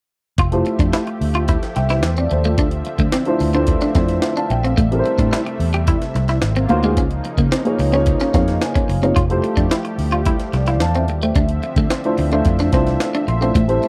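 A dry, close 1970s-style studio sound with digital ambience frames this glossy, breezy slice of polished 1980s jazz-funk pop at 109 BPM in F major, where a gritty, pitched-up, sampler-style drum kit with a thumpy kick sits up front beside a round, foam-muted vintage fingered bass; a dark, boxy baby grand piano with analog chorus adds fills at 8.1 and 12.5 seconds; a clean, picked electric guitar riff shimmers through lush chorus; and a thick, nasal, detuned sawtooth unison pad holds soft, sustained chords beneath, moving through Fmaj9, Dm9, Am7, Ab13 and Db69.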